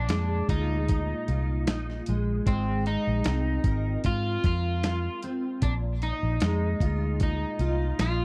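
Nostalgic and laid-back, this short excerpt of indie and bedroom pop moves at an unhurried 76 BPM in 4/4, with a light swing on the sixteenths. An electric guitar at the edge of break-up carries the melody, its twangy, slightly broken-up tone coloured by analog chorus and tape echo. Beneath it, a picked steel-string acoustic guitar with a jumbo, full-bodied sound provides accompaniment, treated with ensemble chorus and a vibrato effect, and a finger squeak comes through. A vintage foam-muted electric bass sits up front, dark, round and punchy, alongside a dusty soul sampler-style drum kit that enters at 0.1 seconds with gritty, compressed hi-hat, a thumpy kick and a medium-tuned snare. The harmony moves from Bb7sus4 to Ab69 at 2.5 seconds and back to Bb7sus4 at 5.6 seconds, all captured in a dry, close 1970s-style studio sound with a touch of digital ambience.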